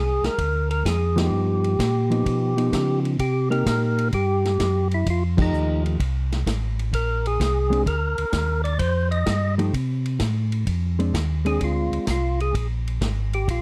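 Swinging and soulful, this short soul jazz organ trio excerpt pairs a fat, lightly overdriven tonewheel organ melody with percussive bite, slow rotary speaker and slapback echo against a round, dark organ bass line with key click, both up front. A big-band drum kit with punchy kick, crash, ride, hi-hat and medium-tuned snare enters at 0.2 seconds, and a clean, fingered hollow-body jazz guitar comps from 1.2 seconds, with band accents hitting at 1.1 and 5.3 seconds. The organ takes a solo over the final stretch from 10.7 seconds, all captured in a dry, close 1970s-style studio sound with light reverb.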